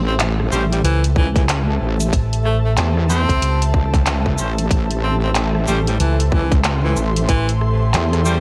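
A swung sixteenth-note groove in 4/4 at 93 BPM drives this funky, playful glitch hop cut from a longer piece, set in A minor over a single A7#9 chord. The drum and bass kit enters at 0.2 seconds with handclaps, hi-hat, rim click and shaker under studio and gated reverb, and a tight, up-front electronic kick joins at 1.2 seconds, carrying its own studio reverb. Two basses sit forward in the mix: a heavy, saturated wobble bass with detuned sawtooth and sine tones and a chorus sheen, and a dark, round, punchy fingered electric bass that enters at 0.8 seconds. A clear, close-miked tenor saxophone with vibrato carries the melody through a delay, while a distant, roomy horn section adds bright stabs roughened by vintage 12-bit sampler grit, with delay and sidechain pumping. In the background, a smooth analog pad with a sub octave holds sustained chords under chorus, and an ethereal, airy pad with ensemble chorus and built-in reverb adds texture, both breathing with sidechain pumping. 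Light reverb, a bright 1980s-style digital production and a layer of vinyl crackle finish the whole track.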